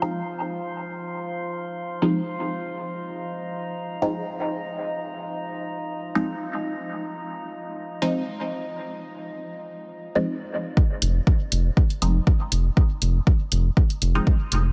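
Set at 120 BPM in 4/4 with a light swing on the sixteenths, this hazy, deep dub techno passage in F minor opens on a filtered dub chord stab. The stab is muted and nasal, a resonant sawtooth with a filter pluck and a moving notch, and it carries phaser and dub echo over an F7 chord lacking its third. Beneath it, a drifting glass-harmonics texture of calm sine tones with drifting overtones sits further back, softened by chorus and its own reverb and pumped by sidechain until it stops at 10.8 seconds. At that point a punchy, overdriven electronic kick drum arrives up front, and at 11.0 seconds a dry, overdriven electronic hi-hat with a low-pass filter joins it. A round analog bass enters at 11.0 seconds on a low F, dark and sustained with a fast attack and a wave-folded blend of square, sine, triangle and sawtooth, pumped by sidechain. A light reverb frames the cut from a longer piece.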